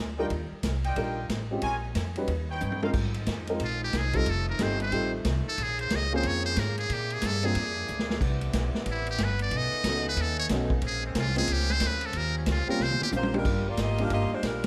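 Lightly reverberant and brassy, this joyful big band swing cut from a longer piece moves at 183 BPM in Ab major, where clear trumpet section stabs open over woody pizzicato upright bass, a short-sustain baby grand piano and a distant, roomy drum kit with a boomy kick, before a buzzy, punchy metal-muted trumpet takes a forceful solo with vibrato from 3.6 seconds against warm, tight saxophone chords, and the saxophone section carries the melody from 13.2 seconds during a drum fill.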